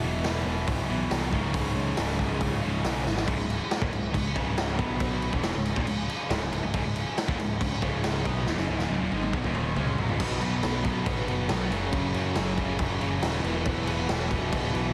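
A compressed, radio-style sound with light small-room ambience frames this aggressive, driving hard rock excerpt, cut from a longer piece. Up front, a raw garage drum kit hits with a punchy kick, medium-tuned snare, hi-hat, toms and crash, gritty and saturated with a rolled-off top, and drum fills land at 3.1 seconds and again from 8.5 to 10.2 seconds. A growly, punchy picked bass drives underneath, while three distorted guitars play riffs further back: a bright, double-tracked overdriven part, a tight distorted one, and a very quiet sludgy part that drops out at 3.1 seconds before returning at 6.7 seconds. A very quiet tonewheel organ holds sustained chords, shouting and lightly overdriven with key click and a slow rotary speaker. The harmony moves through power chords on E, C# and B, touching C# minor, before closing on B, F# and E.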